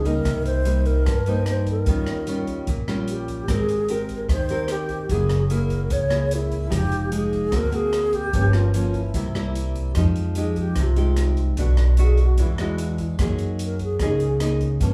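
Bossa nova in F minor at 148 BPM, smooth and intimate, cut from a longer piece, with a hollow, vibrato-laden alto flute carrying the tongued melody over a full-bodied, fingerpicked nylon-string guitar whose finger squeaks and fresh strings sit up front. A woody, thumpy pizzicato upright bass on steel strings anchors the low end, while an airy, polished jazz kit adds hi-hat, rim click and a boomy kick from 0.1 seconds. The band plays live in one room under moderate large studio reverb, and the alto flute takes a solo from 10.0 seconds as the harmony moves through rich chords from Fm9 to a closing Gb69.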